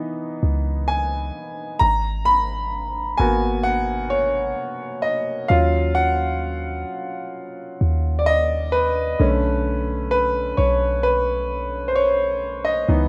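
A clear, natural baby grand piano sits up front with long sustain, taking the solo across this sensual, late-night contemporary R&B fragment at a slow 65 BPM in 4/4, moving through C#m9, G#m9, D#m9 and Bm9 chords while a deep, boomy, sine-like 808-style bass with a fast attack and dark decay enters at 0.4 seconds, all set in moderate studio reverb with a rough home-demo mix.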